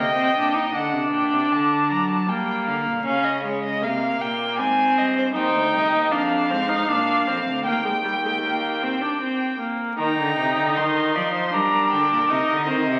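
A string quartet opens together on a C minor chord in this stately, joyful baroque-style fugue, a passage cut from a longer piece and set in triple metre. The rich first violin carries the melody high above the others, while the clear, distant second violin sounds only briefly, drops out at 0.7 seconds and returns at 5.4 seconds with its own second line. Up front and the most prominent voice, the viola supplies a warm accompaniment with a smooth top, and a close cello of similar clarity anchors the bass. All four bowed parts are focused, played with vibrato, and the harmony passes through D7, G minor and A-flat before settling on E-flat, then turns toward G minor and closes on a Cm9 chord. A recital hall reverb adds a lingering wetness, and the recording carries the crackle and patina of a very old 78 rpm record.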